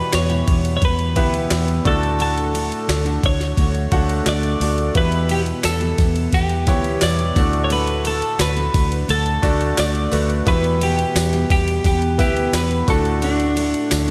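Piano-driven pop at 87 BPM in a straight 4/4, this uplifting, hopeful excerpt in D major moves back and forth between Em and D chords. A clean twelve-string electric guitar carries the melody with a compressed, picked tone, while a clear concert grand piano supplies polished, intimate accompaniment, its long sustain, deep bass and audible action noise colored by slapback echo. Further back, a full-bodied, picked steel-string dreadnought guitar plays a riff, also touched with slapback echo. A vintage muted fingered electric bass sits dark, round and punchy beneath a gritty, pitched-up, sampler-style jungle drum kit set up front, whose thumpy kick, high-tuned snare, hi-hat, ride cymbal and handclaps have a tape-warm, compressed character. A very quiet, jingly tambourine joins at 5.7 seconds, and the whole mix carries light reverb along with some lossy compression artefacts.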